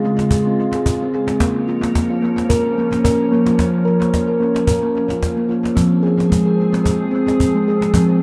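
Gentle and hypnotic, this short cut from a longer meditative world piece moves at 110 BPM in 4/4 with a light swing on the sixteenths, centred in F minor. A steel tongue drum sits up front, playing ringing arpeggios struck with firm rubber mallets, its tone round, pure and dark. Beneath it, a glassy FM pad holds sustained chords with a slow attack and long release, its vintage, ethereal sound warbling through an ensemble chorus and its own built-in reverb. A snappy acoustic cajon with snares enters at 0.2 seconds, compressed and saturated, with an analog delay trailing its hits. The harmony moves from Db to Bbm before settling on Fm as a new section begins at 5.8 seconds, and the whole mix is bathed in a wet spring reverb that gives it an echo-heavy, floating quality.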